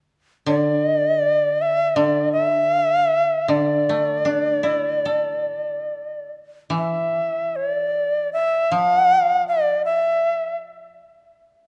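From 0.5 s, an up-front, airy shakuhachi carries a reedy melody with vibrato and a chiff on its crisp attacks over a dry, woody koto accompaniment played with fingerpicks, in this austere, still excerpt of Japanese traditional chamber music that moves in free rubato through concert hall reverb and a dark production, turning to a new section at 6.7 s before the shakuhachi stops at 10.6 s.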